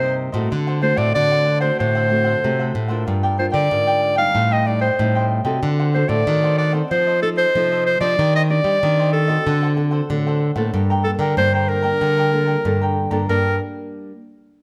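A bright, close-miked clarinet carries the melody from the very start, leading a samba ensemble in G minor at 94 BPM in a straight 4/4 feel, and the mood is nostalgic and yearning. Beneath it, a cavaquinho adds crisp, picked accompaniment, while one fingerpicked nylon-string guitar fills out the harmony up front and a second, smaller-sounding nylon-string guitar supplies the bass line. The clarinet sits in a classical style and stands clearly above the plucked strings, its solo line moving through a progression that runs from Cm7 and D7 through Gm7, Am7b5 and F7 before settling on Gmadd9. The whole ensemble is bathed in a wet large-studio reverb that gives the acoustic strings a roomy glow. This is a short section cut from a longer piece, and the accompanying guitar rings on briefly after the other parts stop at 13.6 seconds, closing around 14.1 seconds.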